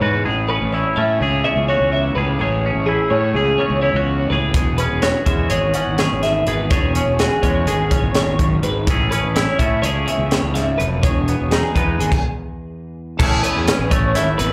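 Bright, compressed twelve-string electric guitar arpeggios in ensemble chorus ring over a twangy, clean electric guitar with slapback echo and a round, fuzz-overdriven fingered bass in this intricate math rock and midwest emo passage in 9/8, with a crisp fusion drum kit, with its high-tuned snare and punchy kick, joining at 4.5 s before a stop at 12.1 s, captured at a live gig through the venue's PA in moderate club reverb.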